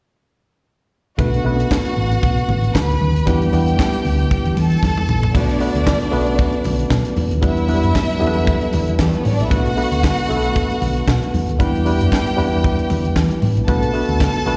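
A worn, slightly out-of-tune tine electric piano sits up front, lightly overdriven and heard through its built-in speakers as it lays down the accompaniment in this glamorous, sultry disco cut in B minor, taken from a longer piece at 115 BPM with a gentle sixteenth-note swing. Beneath it, a hollow-body short-scale electric bass played with the fingers gives a dark, round, amped tone, while a tight funk drum kit, dry and acoustic with bright cymbals, a high-tuned snare and a snug kick, drives the groove across crash, hi-hat, toms, kick and snare. A lush, close studio string section carries the second line with bowed vibrato and a focused ensemble sound, touched by a slapback echo. Very quiet congas with a thin, hard-handed, band-limited vintage skin sit low in the mix. The harmony rocks between Bm7 and Em7 throughout, and a drum fill at 4.8 seconds leads from the opening section into the next at 5.3 seconds, all heard as a live gig through the venue's PA with recital-hall reverb and a small-room ambience.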